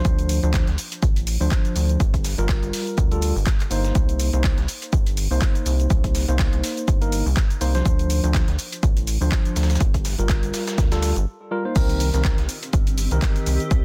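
A dense, heavily limited mix in a digital ambience frames this deep, smooth deep house cut from a longer piece, moving at 123 BPM in C dorian with a swung 16th-note feel over Dm7, Gm7 and Cm7 chords. A punchy, up-front electronic kick and a bouncy, hollow square-wave bass with sidechain pumping anchor the groove, while a tine electric piano plays clean stabs through tape echo. A layered house kit with crash, handclaps, hats and shaker sits above a gritty, overdriven sampler-style soul kit in the background, and after a short break at 11.3 seconds, a cloudy, detuned granular pad blooms in at 12.5 seconds for the drop.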